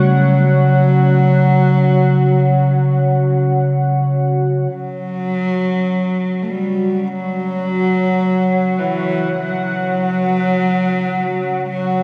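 Dark ambient drone at a slow 52 BPM, vast and ominous, where a deep, rumbling synth drone on C#3 carries a filter sweep through the first 4.7 seconds, a very quiet bronze singing bowl rings with slow beating until 4.7 seconds, a bright, resonant pad holds evolving chorused chords from F#4 to F#5, and an intimate, airy cello played sul tasto with light vibrato sings a close melody through diffuse delay, all set in a cathedral-like reverb of 6.5 seconds in a cut from a longer piece.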